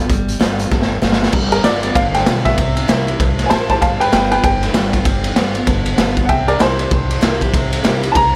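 A light reverb sits around this rowdy, rollicking rockabilly excerpt, cut from a longer piece and driving at 194 BPM in 4/4 with a swung eighth-note feel in G mixolydian. The raw garage drum kit is the loudest and most up-front part: a gritty, saturated small-room sound with a pumping room, dark cymbals, a punchy kick and a medium-tuned snare. Its fill at 0.7 seconds leads into the piano solo. Underneath, a pizzicato upright bass with gut strings gives a woody, thumpy low end, and a full-bodied jumbo steel-string acoustic guitar is picked as accompaniment, with audible finger squeak. The upright piano enters at 1.5 seconds to carry the melody with a slightly detuned, short-sustain tone and a touch of analog delay. The harmony moves between G7 and C7 throughout.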